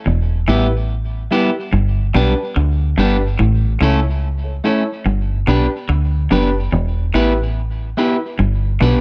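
Meditative and hypnotic, this brief reggae excerpt in a straight 4/4 rides a deep dub fingered electric bass, round and foam-muted, sitting up front and dark under a bright, twangy electric guitar riff at the edge of break-up. From 0.5 seconds a clean, picked electric guitar adds warm accompaniment through tape echo, while a dark upright piano drops woody, mellow stabs with long sustain. The sound is dry, cycling through Em, G and A chords.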